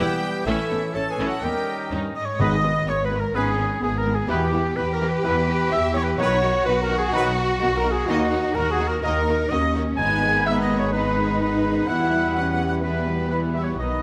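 A moderate scoring-stage reverb gives this orchestral passage, cut from a longer piece, a spacious, roomy sound that suits its determined, adventurous heroic-film character in a straight 4/4. The bowed double basses sit up front with a rich, expressive tone, joined by the cello section's lush, vibrato-laden bass. Above them, a soft-attacked violin section with a smooth top carries the melody from the background. A present, classical-style clarinet plays among the woodwind second lines, alongside a clear oboe, a mellow, hollow silver flute and a very quiet, focused second violin section. Very quiet violas fill in the accompaniment, while distant horns and tight, bright trombones hold sustained chords and a trumpet section adds light-vibrato stabs. Timpani struck with hard mallets punctuate the texture at 2.4 and 10.0 seconds, as the harmony moves from G#m through Em, B and D#m.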